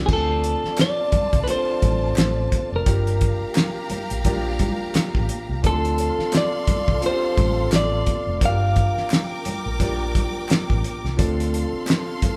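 A lush, reverberant studio sound surrounds this short cut from a 1970s-style soul track in D minor, played by a band live in one room at 86 BPM with a lazy sixteenth-note swing and a bittersweet, smooth mood. Up front sits a cloth-damped, thuddy drum kit with a fat snare, tight kick, dark cymbals and rolled-off top, while a vintage muted fingered bass supplies a round, foam-muted low end. A clean, compressed electric guitar carries the melody until about 9.1 seconds, backed by a concert grand piano with deep, natural bass and a close, bowed string section whose expressive vibrato adds a lush second line. High-tuned, ringing congas enter at 0.4 seconds in the background, and very quiet, crisp group handclaps join at 0.8 seconds. The harmony rocks gently between Dm7 and Gm7 throughout.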